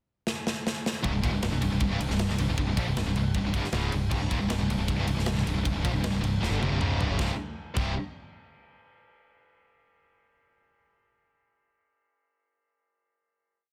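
A short, complete heavy metal piece with a relentless, heavy mood, played in a straight 4/4. The tight metal drum kit opens alone with a fill at 0.3 seconds, sitting up front with a mid-forward, big-room sound, a medium-tuned snare, a tight kick, crash and ride cymbals and toms driving a rock groove. At 1.0 seconds three distorted, high-gain electric guitars come in together with picked power-chord riffs, bright and set in the background, one of them double-tracked. A growly picked electric bass enters with them, direct in tone, driving eighth notes that double the guitar riff. After another drum fill, the band lands on a final chord at 7.2 seconds, captured dry and dense under a heavily limited modern master.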